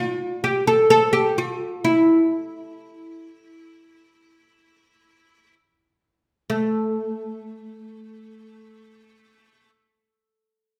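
Stately and warm, this Arabic excerpt in free time features a solo acoustic oud, fretless and plectrum-plucked, playing from 0.0 to 9.7 seconds within a range of A3 to A4. Its double strings give a woody voice that sits up front in a generous recital hall reverb, and the passage shifts into a new section at 6.5 seconds before the cut from the longer piece.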